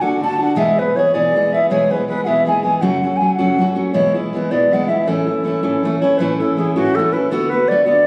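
Cheerful and bright, this short cut from a longer Celtic folk piece moves in a straight 6/8 at 107 BPM in A major, tuned slightly sharp at A4 = 443 Hz. A mellow, hollow baroque flute carries the melody with an airy wooden tone, vibrato and tongued notes, its rolled-off highs set in plate reverb. Beneath it, an up-front, full-bodied fingerpicked steel-string dreadnought guitar supplies the accompaniment through chords moving from D and E to F#m and A, with a shift into a new section at 6.2 seconds that settles on D6, all heard through a phone-recorded room sound with club reverb and compression.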